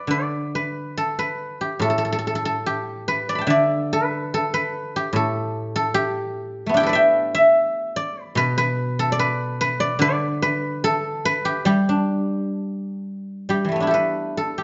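Chinese traditional solo plucked-string music, pastoral and elegant, unfolds at a free rubato pace of about 62-76 BPM in 4/4, set in the G gong mode. A guzheng played with fingerpicks carries the whole piece alone from 0.0 to 14.6 seconds, its silvery, ringing tone placed up front and spanning A2 to B5, with a new section arriving at 13.5 seconds just before this cut from a longer piece ends. A moderate recital-hall reverb and a dark, warm production round off the sound.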